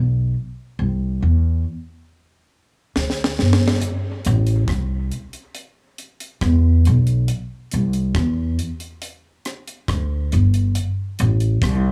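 Dub reggae excerpt in A minor at a slow 69 BPM, deep and meditative, opening on a woody, growly pizzicato upright bass sitting up front with a bright steel-string bite, joined at 3.0 seconds by a dry acoustic reggae drum kit whose high-tuned snare, tight kick, rim click and hi-hat enter through a drum fill before settling in, all heard in a small, close room.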